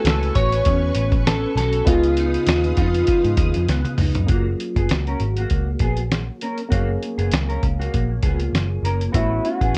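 Dreamy and nostalgic, this indie bedroom-pop excerpt in F# major at 99 BPM sets a slightly broken-up lead electric guitar through a small old amp with slapback echo over a twangy clean electric guitar, a woody, slightly detuned upright piano with audible action noise, a sawtooth string-machine cello pad that stops at 4.3 seconds as a fingered, mellow second electric guitar enters, a round, foam-muted picked bass and a thumpy sampler-style drum kit with a fat snare that plays a fill from 3.7 seconds, the mix carrying a worn, warbling tape character with light reverb.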